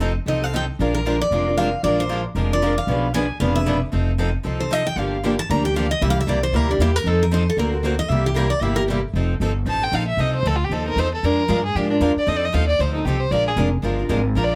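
Acoustic string swing in the jazz manouche style, charming and playful. Two picked steel-string acoustic guitars carry the accompaniment throughout: one a full-bodied jumbo placed up front, the other a boxy parlour, both bright with fresh strings and audible finger squeak. They sit over a woody, thumpy pizzicato upright bass on dark gut strings. A third boxy parlour guitar takes the solo line from 0.3 to 8.8 seconds, and then a single bowed violin, up front with a soft attack, expressive vibrato and portamento, takes over the melody from 9.7 seconds, all in a light reverb.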